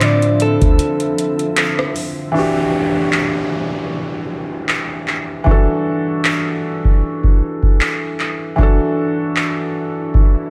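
A booming analog drum machine sits up front with a deep kick, metallic hats, handclaps and rim click, driving this late-night, longing contemporary R&B excerpt at 77 BPM with a light 16th-note swing, alongside a soft, felt-muted upright piano whose action noise stays audible throughout. A clean, direct-recorded electric guitar melody with spring reverb and digital delay opens over a blurred, detuned granular cloud pad and a boomy 808-style bass on Dm9, but the bass drops out at 0.8 seconds for a break, the guitar stops at 1.9 seconds and the pad ends at 2.3 seconds. From there the harmony moves to Em9 as an electronic downlifter and swell drifts in behind the piano and drums, all set in a light reverb.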